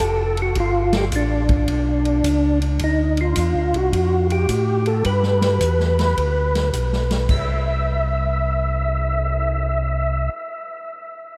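Swinging and greasy, this short soul jazz organ trio excerpt at 107 BPM pairs a round, percussive tonewheel organ melody with a mellow, dark tonewheel organ bass, both up front with chorus vibrato and slow rotary speaker (the melody adding delay), over a swinging big-band drum kit with punchy kick, medium-tuned snare, ride, hi-hat, crash and cymbal swell that stops at 9.4 seconds, all soaked in a dreamy, huge ambient reverb as the chords move from Dm through G and Dm9 to C at 7.3 seconds.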